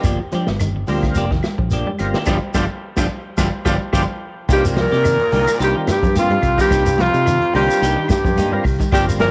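Afrobeat at 108 BPM in C minor, this funky, intense fragment of a longer piece rides a lightly swung sixteenth-note feel over a Gm7 chord that moves to Cm7 at 4.5 seconds. A vintage drum kit with dark cymbals and a punchy kick sits alongside a round, dark fingered electric bass, while a grainy shekere, very quiet woody claves and thin-skinned congas fill in the percussion. In the background, a thick, overdriven tonewheel organ with key click and slow rotary speaker holds the accompaniment, a clean semi-hollow electric guitar plays stabs, and a twangy guitar at the edge of break-up picks arpeggios, both guitars carrying analog chorus. The band hits an accent at 2.3 seconds, and at 4.5 seconds the horns arrive: a breathy, whispered alto saxophone carries the melody up front with tape echo, shadowed by a very quiet clear trumpet and a raspy, gritty baritone saxophone in the background. Moderate spring reverb and the character of a home cassette recording give the whole track a lo-fi vintage sheen.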